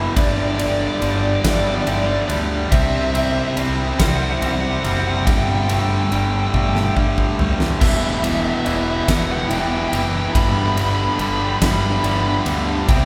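Post-rock with a melancholic, cinematic mood, moving at a slow 47 BPM in a straight 6/8, this excerpt from a longer piece rolls through G, C, Gsus2, Em and back to G. Up front, an overdriven distorted electric guitar drives a bright, picked riff, while a raw garage guitar carries the melody high above. Beneath them, a fuzz-laden fingered electric bass adds a round, overdriven low end, and a huge arena drum kit hits with a fat snare, punchy kick, bright cymbals and toms, with a fill from 6.5 to 7.8 seconds. Tucked into the background, a felt-muted upright piano plays soft, mellow arpeggios with audible action noise, and a very quiet, twangy clean guitar adds compressed arpeggios of its own. At 7.8 seconds a second distorted guitar enters behind the others with its own riff, and a church-like reverb gives the whole mix a long, wet tail.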